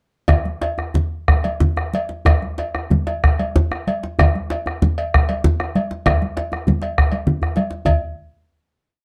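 A festive, earthy West African drum ensemble opens at 0.3 seconds with bombo, djembe, congas and cowbell all sounding together in a straight 12/8 feel, the tempo pushing forward from 121 toward 141 BPM across the whole short piece. The bombo is round and up front, carrying a live-room sense, while the djembe sits close and dry with a medium tuning and soft hands in an evenly spread pattern. The congas add a bright, thin-skinned, damped voice, also close and medium-tuned, and the cowbell adds a metallic, compressed, saturated bell pattern. A drum fill arrives at 7.3 seconds, and the parts stop at 8.0 seconds as the piece closes on a final hit. Light reverb and a dark production give the ensemble an earthy, grounded character.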